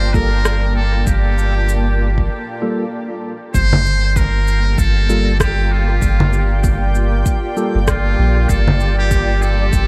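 Ambient dub at 97 BPM in G minor, deep and hazy, with a swung sixteenth-note feel over a Gm9 chord in this excerpt cut from a longer piece. A distant, buzzy metal-muted trumpet carries the melody with light vibrato and dub echo, floating over a cloudy, evolving granular pad and a round, soft sub bass that sits up front. A clean tine electric piano adds echoed stabs until 7.8 s, while overdriven electronic cabasa, rim click and congas with dub echo ride over a layered electronic kick in the background, with a break from 2.3 to 3.5 s before the next section begins, all set in a light digital ambience.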